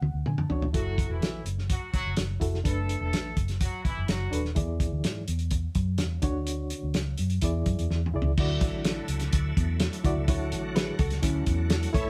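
A straight, driving 4/4 groove from an up-front, muffled soul drum kit and a round, punchy foam-muted electric bass carries this urgent, passionate 1960s-style soul fragment, where a reedy electric piano with fast tremolo opens with a fill, a clear horn section adds a second line from 0.7 to 4.4 seconds, a shouting tonewheel organ with chorus vibrato and slow rotary speaker holds sustained chords from 8.4 seconds, and a dark hollow-body jazz guitar slips in a brief riff at 10.8 seconds, all set in a live room with light reverb.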